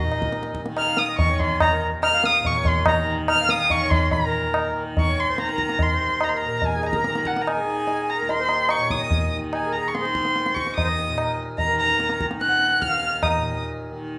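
Moderate recital-hall reverb surrounds this solemn, longing Hindustani classical passage cut from a longer piece, where a dark, woody bowed violin with vibrato carries the melody up front over a reedy, breathing harmonium second line, a softly plucked, buzzing tanpura drone that shimmers beneath, and low-tuned, ringing tabla, the performance speeding up throughout its 14.2 seconds.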